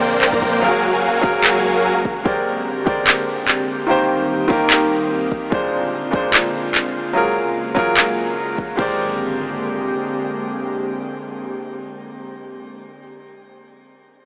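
Heard through a lo-fi AM radio filter and bathed in a moderate shimmer reverb, this lush, playful future bass piece moves at 147 BPM in a half-time feel with a light swing on the sixteenths, set in Ab lydian and tuned slightly below standard pitch. A brilliant, polished grand piano carries the accompaniment up front, its short-sustained notes pumping against the sidechain and trailing tape echo, while a soft, breathy pad with chorus holds slow-blooming chords beneath it. Huge, detuned supersaw chords ring out bright and up front only through the opening 1.9 seconds, joined there by a deep, boomy 808-style bass that sits in the background under a filter sweep and returns at 8.8 seconds. A tape-saturated trap kit with crash cymbal and handclaps drives the groove up front, and a punchy, layered electronic kick joins at 1.2 seconds, both set in a small room. The harmony circles through Bb9, Gbmaj9, Abmaj9#11 and Eb6, giving the passage a dreamy, floating colour.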